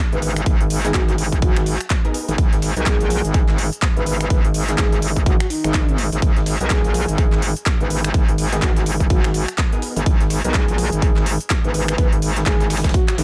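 A metallic, saturated wobble bass with chorus, overdrive and sidechain pumping drives this swaggering, bouncy bass house in G# minor at 125 BPM, sitting low between G#1 and B1 over a single G#madd9 chord with a swung 16th-note feel. A punchy, up-front electronic kick, a big-room dance kit of crisp hats, finger snaps and handclaps, and a very quiet, gritty breakbeat sampler kit with hi-hat and snare fill out the dry groove, while a breathy, flute-like synth lead with vibrato, chorus, cassette tape and delay floats in the background. A very quiet orchestra-hit-like stab, bright and detuned with a phaser, stops at 10.6 seconds, and a reverse cymbal appears at 13.1 seconds at the close.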